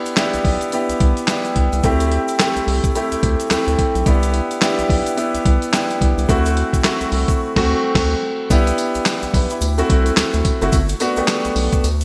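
An intimate concert grand piano sits up front in this punchy, bouncy new jack swing excerpt, its polished chords carrying a touch of chorus, long sustain and audible action noise as it moves through Cmaj7, D9sus4 and D7. Beside it, a gritty, sampler-style drum kit with a thumpy kick, fat snare, hi-hat, handclaps, tambourine and crash cymbal drives the 108 BPM groove, its compressed, tape-warm tone soaked in gated reverb. The 4/4 feel carries a 60% swing on the sixteenths, and a grainy, bright egg shaker sits close and dry in the background. A round analog bass, deep and dark with a fast attack and sustained notes, enters at 0.3 seconds and anchors the low end. The full band lands an accent from 7.4 to 8.5 seconds before the harmony shifts at 8.5 seconds, resolving through Cmaj7 and D7 to Gmaj7. A lush hall reverb and a bright 1980s-style digital production frame this fragment of a longer R&B piece.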